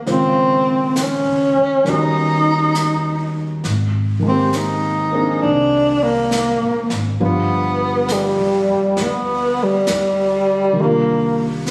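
Melancholic and intimate, this slow jazz ballad moves at 67 BPM in 4/4 with a gentle swing on the eighth notes, and it is cut from a longer piece. A breathy tenor saxophone carries the melody up front from 0.1 seconds, its dark, whispered subtone sung with vibrato, soft attacks and scooped notes over a smooth top. A grand piano accompanies with a natural, warm sound, its action noise audible in the close setting. An upright bass plays pizzicato underneath with a woody tone, while a vintage brush drum kit stays low in the mix, its brushed snare and hi-hat sounding in a small, pumping room with a rolled-off top. The harmony drifts from Bbm11 through Eb7alt to Abmaj9, then G7 and Cm11, and the whole recording carries a phone-in-the-room character with light studio reverb and compression.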